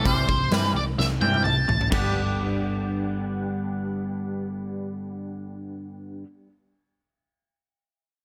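A dark, fuzz-drenched lead guitar opens this short cut from a quiet-loud alternative rock piece, playing an up-front solo melody through distortion and digital delay. Beneath it, a bright, twangy clean electric guitar picks compressed arpeggios, thickened by ensemble chorus and its own delay, while a hollow-body short-scale bass adds round, amped low notes. A big acoustic rock kit with bright cymbals, a medium-tuned snare and a punchy kick sounds natural in a roomy space, rolling into a drum fill at 1.0 seconds over an anthemic, cathartic mood. At 1.9 seconds the harmony moves from C to G as the solo ends and the drums stop just after, leaving the arpeggiated guitar and bass to carry a sparser passage until about 6.3 seconds. Light reverb and studio ambience surround the recording.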